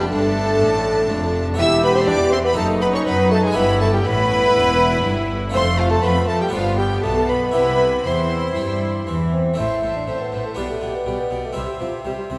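This is a lively, festive baroque-style concerto movement in 4/4 with a straight feel, heard as a short passage from a longer piece. A dark, distant solo bassoon with light vibrato carries the melody in its middle register, sounding roomy against the strings. Above it, a chamber violin section sings a rich, expressive melody high in its range, while a second violin line plays a smooth, even part in the background. A close-miked, dry harpsichord with a brilliant, full French-style tone and octave strings supplies plucked accompaniment alongside a studio viola section. Underneath, a lush, focused cello section and a distant symphonic double bass section hold the bass line, all bathed in a concert hall reverb, before the harmony turns toward a fresh passage at 9.6 s and settles on C at 11.6 s.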